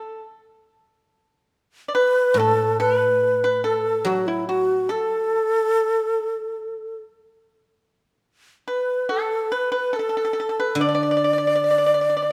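A breathy, hollow xiao sings the up-front melody with vibrato, joined from the start by a dry, percussive pipa tracing a second line in the same register, before a silvery, ringing guzheng enters low at 2.3 seconds to accompany them, giving this short excerpt from a pastoral yet festive Chinese chamber piece its unhurried rubato feel around 71 BPM in 4/4, all set in a moderate, stage-like reverb.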